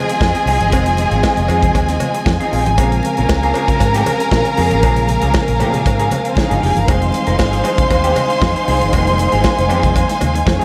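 A straight 4/4 disco groove at 117 BPM in F minor is driven by a modern studio drum kit with a punchy kick and medium-tuned snare, a bright fingered electric bass through an envelope filter, very quiet hard-hand congas and a metallic cowbell in the background, all moving over Fm7 and Bbm7 chords in this short, danceable and sultry excerpt. A lush violin section with expressive vibrato carries the second line above a rich string section holding sustained chords with portamento. Further back, a mellow, clean tine electric piano and a slightly broken-up, compressed electric guitar with spring reverb fill out the accompaniment, and light reverb surrounds the mix.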